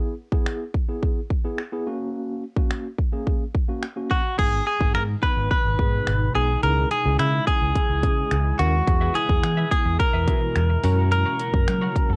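Driving and confident, this dance-pop excerpt opens on a tine electric piano heard through its built-in speakers, pumping against the sidechain. An up-front, produced electronic drum kit joins almost at once, with a punchy kick, finger snaps, hi-hat and crash cymbal. At 4.1 seconds a bright, twangy electric guitar recorded direct takes the melody up front, and a dark, round, foam-muted fingered bass soon arrives to pump beneath the chords. An ethereal, airy pad drifts in behind, its detuned sawtooth and triangle layers softened by ensemble chorus, a noise layer, slow attack and long release. From 8.9 seconds a compressed, clean twelve-string electric guitar picks out a riff in the background with subtle chorus, while cassette tape grain colours most parts and light reverb surrounds the home cassette recording.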